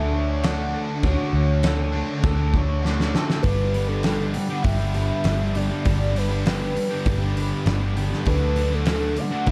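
An up-front, round and punchy foam-muted electric bass anchors this blissful, wistful shoegaze and dream pop rock passage at 100 BPM in a straight 4/4, cut from a longer piece. Above it, a velvety sawtooth-and-triangle synth lead carries the melody with a fast attack, sustained notes, vibrato, chorus and tape echo. Four picked electric guitars sit in the background: a twangy, slightly broken-up one plays arpeggios through analog chorus and tape echo, while a biting overdriven guitar with reverse reverb, a bright double-tracked overdriven guitar and a thick, dark fuzz guitar with lush chorus build layered riffs. A loose acoustic drum kit with a fat snare, punchy kick and dark cymbals joins at 0.4 seconds and plays a fill from 2.8 to 3.4 seconds as the harmony moves from Dmaj7 to G, later settling on D6 at 8.3 seconds. The production is dark and warm, set in a small, pumping studio room.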